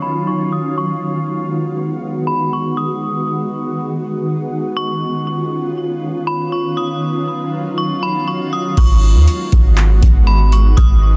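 Atmospheric cloud-rap with a melancholic, spacious half-time feel, this excerpt opens on a shimmering, ethereal pad of sustained, detuned chords and a metallic, inharmonic FM bell melody ringing through chorus, phaser and delay over a filter sweep, until a deep, boomy 808-style bass and a booming analog drum machine with handclaps, crash and metallic hats arrive at 8.8 seconds.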